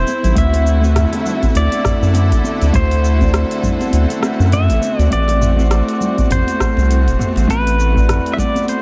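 A lush, bowed string section and a clean pedal steel guitar open this short cut from a smooth, relaxed sunset chillout piece, the steel sliding through a high melody played with fingerpicks and volume swells, colored by analog delay. A round, dark analog bass sits up front from the start, deep and sustained with a fast attack. Just after, a deep house kit with metallic hats, cabasa, rim click and toms arrives alongside very quiet, ringing congas struck with hard hands, and by 0.4 seconds a dry, deep electronic kick and a mellow, fingered electric guitar join in, the guitar and kit both carrying tape echo. The drums move with a gentle 16th-note swing in 4/4, while the strings hold smooth, even chords beneath, shifting from D13 to Am69 at 5.1 seconds. Light reverb and plenty of echo give the mix a hazy, tape-warmed glow.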